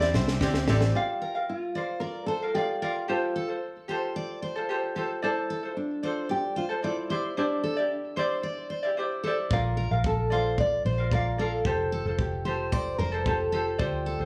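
A straight 4/4 pulse at 112 BPM opens this carefree, heartfelt acoustic pop excerpt in F major with a brief drum fill on a dry compact cocktail kit (punchy kick, high-tuned snare), joined for that first second by a round, foam-muted electric bass, a very quiet felt-muted upright piano and a reedy, breathing hand-pumped harmonium, while throughout a dark, classical nylon-string guitar carries the fingerpicked melody with audible finger squeak over a bright, up-front ukulele, both with plate reverb, and a full-bodied jumbo steel-string guitar picks arpeggios through plate reverb and tape echo, with the bass and drums returning at 9.5 s in a moderate studio room.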